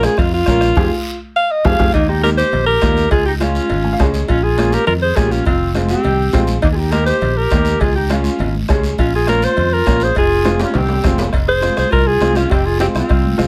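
A straight cumbia pulse at 204 BPM in 4/4 drives this fiery, danceable piece in F minor. Its foundation is a soft-beater bombo, a raspy guiro and high-tuned congas struck with hard hands in a live room, with ringing, vintage cowbell and timbales sitting in the background. A breathy alto saxophone carries the melody up front, mellow with light vibrato and a smooth top; it opens with a solo phrase over a band accent, and a drum fill leads into the main section at 1.9 seconds. There a clear clarinet joins with a forceful, jazz-style second line, while a woody upright piano supplies accompaniment and adds a brief fill near 3.7 seconds, and a bright, growly fingered electric bass holds the low end. The chords move through Bbm, Fmadd9, Eb and Db, and another drum fill near 10.5 seconds ushers in a short closing section, captured with close, detailed microphones and light reverb.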